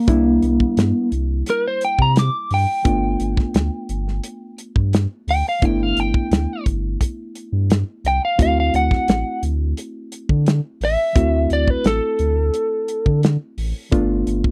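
A dark, slightly broken-up lead electric guitar solos up front through this rollicking, soulful straight-eighth soul blues at 87 BPM, over a reedy, worn electric piano, a deep sine-and-triangle sub bass with octave, and a damped 70s drum kit with a tight kick and a rolled-off top, all captured in a dry, close 1970s-style studio sound as the chords move from C9 to G9 and D9 across this 14.5-second cut.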